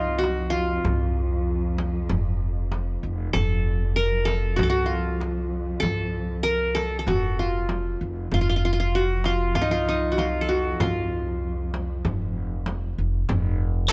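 Stately and festive, this short cut from a longer Turkish makam ensemble piece in straight 4/4 puts a bright-edged, plectrum-plucked qanun melody up front beside a woody, thumpy pizzicato upright bass, over a veiled con sordino drone from a muted chamber cello section, while a crisp metal-shell darbuka sits very quiet next to a close, dry frame drum, captured with little reverb.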